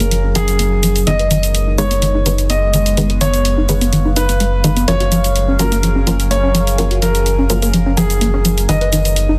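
A straight 4/4 pulse at 126 BPM drives this hopeful, uplifting progressive house excerpt in F# major, with electronic hi-hat and shaker set in studio ambience keeping time from the start. Underneath, a round analog bass sits up front on F#1, its dark, deep tone thickened by tube saturation. A tight sequenced synth runs driving, detuned arpeggios through chorus, and a filter sweep moves across it the whole way. A very quiet unison pluck adds lush, wave-folded stabs. An evolving wavetable pad holds bright, morphing chords through phaser and its own reverb, also under a filter sweep. On top, an intimate concert grand piano carries the melody with audible action noise and a boxy character, roughened by vintage 12-bit sampler grit and dub echo. It plays over chords that alternate between F#maj7 and G#m/F#, shifting at 1.1, 4.9 and 8.7 seconds, in a dense, heavily limited master with light reverb.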